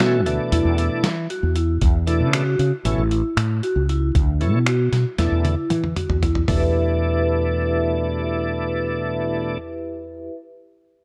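Tense and intricate, this progressive instrumental excerpt in 9/8 and E dorian moves at 231 BPM in eighths, with a gritty, pitched-down sampler-style drum kit of thumpy kick, snare, toms, hi-hat and finger snaps rolling through a fill from 4.9 seconds before dropping out at 6.6 seconds, while a growly, punchy fretless electric bass sits up front, a ringing, metallic vibraphone with slow motor vibrato spins arpeggios, and a shouting, lightly overdriven tonewheel organ with key click, chorus vibrato and slow rotary speaker voices chords like Dmaj7, Aadd9 and Em7 before stopping at 9.6 seconds, all within a dark production touched by light reverb.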